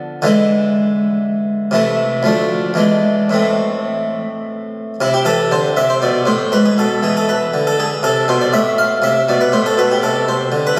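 This classical, baroque-style suite movement in triple time is a flowing, solemn fragment cut from a longer piece, played with rubato on a solo harpsichord. The instrument sounds plucked, round and full, with a single set of strings in the Italian style, miked close and placed up front. Its two short sections turn at 5.0 seconds, and a long, wet church reverb surrounds the whole, which was recorded on a phone in the room.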